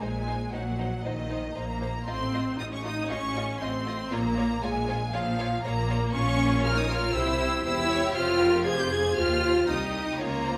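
A quick classical-period movement for string orchestra in Bb minor at 117 BPM in 4/4, this brief cut from a longer piece feels restless and urgent, its rubato lending a pressing, searching quality. A warm, focused violin section carries the melody up front with a smooth top and vibrato, while a second violin section adds a rich, lush second line beneath it. The viola section sits prominently in the accompaniment, its tone smooth and even, and the cello section joins the bass with a focused, bowed richness. The double bass section anchors the bottom from a distance with light vibrato. All five sections play throughout the 10.6 seconds, moving through a harmony that settles from Cm7b5/Bb and F7/A onto Bbm before touching C, F5 and Cm/Eb, all bathed in a wet scoring-stage reverb.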